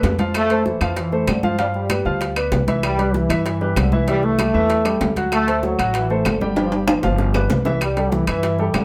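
A lively band plays together in a small, reverberant room on this joyful, danceable salsa excerpt, where a punchy, tight trombone section carries the melody over a clear, slightly worn grand piano and a dark, thumpy pizzicato upright bass, both up front. Close, ringing metal-shell timbales stand out among the percussion, while bright high-tuned congas, round low-tuned bongos and woody claves, entering at 0.3 s, sit further back. A drum fill from 6.6 s to 7.8 s lifts the groove into the return of the opening section as the chords settle on C6.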